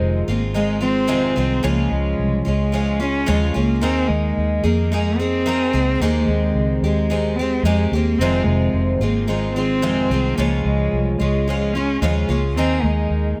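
A smooth, bowed cello carries the melody with vibrato in this reflective, tender acoustic pop excerpt in F minor, set at 110 BPM with a light 16th-note swing and tuned to A4 = 438 Hz. Up front, a picked twelve-string acoustic guitar rings out shimmering and woody on old strings, while a vintage foam-muted electric bass adds a dark, round, punchy low end. Light reverb softens the trio as the harmony moves from Fm7 through Db and Ebsus4 to Abmaj7 before returning.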